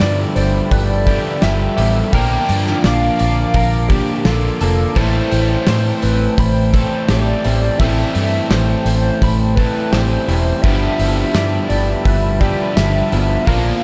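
Hazy and dreamy, this shoegaze and dream pop rock excerpt moves at an unhurried 85 BPM through G13, Bbmaj7 and Am7 chords, with a soft, round sine lead carrying the melody through chorus, delay and vibrato above a brassy, evolving analog pad held in the background. A bed of guitars fills the middle: a twangy, direct-recorded clean guitar picks arpeggios, while a slightly broken-up guitar through a small old amp with reverse reverb, a dark overdriven semi-hollow guitar and a bright, double-tracked garage guitar all play riffs behind the lead. Up front, a foam-muted, round fingered bass and a loose indie drum kit with a tight kick and pumping room sound anchor the small, dark room, while a jingly tambourine appears at 11.3 seconds.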